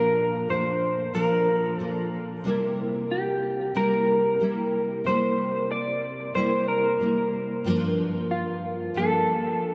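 A slightly broken-up electric guitar through a small old amp carries the melody in this hazy, wistful indie pop fragment, its lo-fi, picked tone thickened by analog chorus and delay. Beneath it, a fingerpicked nylon-string guitar supplies full-bodied, deep classical accompaniment, shimmering with ensemble chorus and a vibrato effect. Both guitars sit up front and play throughout the roughly 9.7 seconds, moving at 92 BPM in 4/4 with a light swing on the sixteenths. The harmony drifts from Bbmaj7 to C7 at 2.5 seconds, then settles on Gm7 at 7.7 seconds. A cathedral reverb with a 4.6-second decay soaks the whole mix, giving this short cut from a longer piece a dreamy, suspended quality.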